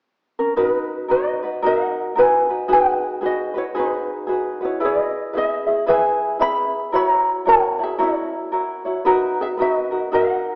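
A thumb-plucked, warm lead ukulele opens at 0.4 s with a light, up-front melody, and a mellow fingerpicked ukulele joins at 0.6 s in accompaniment, moving through Bmaj7, G#m7, E and F#7 in this sunny, dreamy Hawaiian swing excerpt at 113 BPM in B major, set in the lush reverb of a recital hall with a small-speaker sound.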